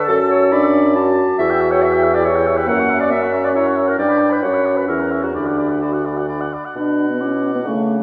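A quick, restless classical-period movement for wind quintet in B minor opens with all five players together in 3/4 at 126-141 BPM, its rubato feel lending a stormy urgency. A hollow, pure silver flute with vibrato carries the melody high above an oboe second line with a smooth top, while a mellow, distant clarinet and a softly vibrato French horn fill in the accompaniment over a punchy, up-front bassoon bass. The harmony passes through F#7 and G before arriving on Bm at 6.8 seconds, the whole short cut from a longer piece set in a wet recital-hall reverb heard from further back in the room.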